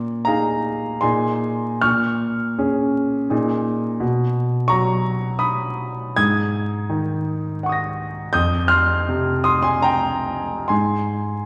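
Vinyl crackle and a wet, spacious scoring-stage reverb set this short excerpt further back in the room, giving it a vintage, nocturnal haze. Within that space sits a lone concert grand piano, warm and smooth, its deep bass heard up front. The music is classical solo piano in an impressionist vein, unfolding in a rubato 3/4 with a mysterious mood. Its range spans from F2 up to Bb6, and its harmony drifts through suspended and added-tone colours, moving from Bb7sus4 at the opening through Bmaj7 at 4.0 seconds and Fm9 at 8.4 seconds before coming to rest on Ab. Cut from a longer piece, the passage lasts 11.5 seconds and feels like a glimpse of a dreamlike, twilight reverie.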